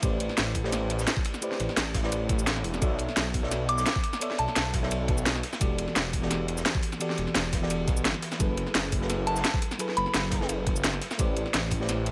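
A swelling, detuned sawtooth bass sits up front in this lush, dreamy liquid drum and bass passage at 172 BPM in B minor, its saturated unison tone evolving with a menacing filter swell beneath the minor eleventh chords. A mellow FM electric piano, round and dark with a noise layer, carries the harmony through chorus and dub echo. The drums are layered: an overdriven electronic kit with a cracking snare and bright hats sits up front, a knocking, overdriven kick drives underneath, and a gritty, saturated acoustic breakbeat with dark cymbals and a rolled-off top adds texture in the background. The kick briefly drops out at 2.5 seconds, and a soft, pure synth bell with chorus and digital delay drifts in for short phrases at 3.7 and 9.3 seconds. Light reverb and a digital ambience give the whole excerpt a gentle, airy space.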